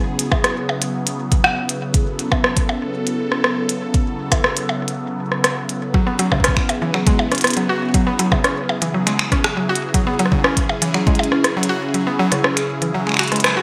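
A straight 120 BPM pulse in 4/4 from a deep electronic kick and a clicky, glitchy kit of finger snaps, hi-hat, rim clicks and percussion blips with gated reverb drives this melancholic IDM cut in F# minor, where a swirling, detuned sawtooth pad with phaser and chorus holds sustained F#m7 and then C#m7 chords, a woody, round, mallet-like FM pluck enters at 5.9 s with chorus and delay on arpeggios, the kick stops at 11.2 s, and a band accent lands at 13.4 s, all in a bright 1980s-style digital production bathed in wet plate reverb.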